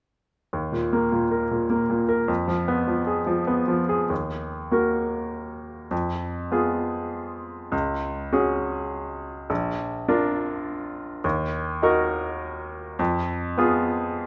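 A rubato 3/4 sway at about 101 BPM carries this longing, reflective classical passage in Eb minor, cut from a longer piece, where a brilliant, woody upright piano sits up front as accompaniment from 0.5 s, moving through Ebm, Fdim, Dbsus4 and Bb harmonies in a new section from 4.1 s to 14.3 s, all set in a moderate recital hall reverb.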